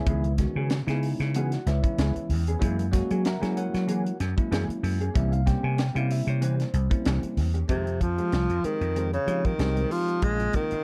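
Bell-like tine electric piano chords and a dark, compressed electric guitar with an ensemble chorus open this slick, intense electric jazz fusion fragment, the guitar placing clean fingered stabs in the background. A growly, punchy vintage slap bass sits up front with an amped bite, while a tight funk drum kit, with a high-tuned snare, tight kick and hi-hat in a natural small-room sound, drives a swung sixteenth-note feel in 4/4. The harmony moves through rich chords such as C#m7, F#9 and C7b9. At 7.7 seconds a breathy tenor saxophone takes the melody in its low register, soft-attacked and whispered with gentle vibrato, intimate and close in the mix. Light reverb and a dark, warm production tie the parts together until the clip cuts off at 10.8 seconds.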